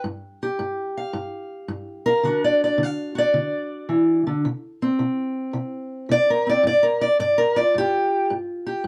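Dark, warm studio sound with a moderate room ambience frames this gritty, rollicking acoustic country blues fragment at 109 BPM with a swung 4/4 feel, where a lone fingerpicked steel-string parlour guitar with a woody, boxy, old-string tone sits up front from 0.0 to 8.9 seconds, moving from G7(no3) to D, through a chordless passage, and back to G7(no3).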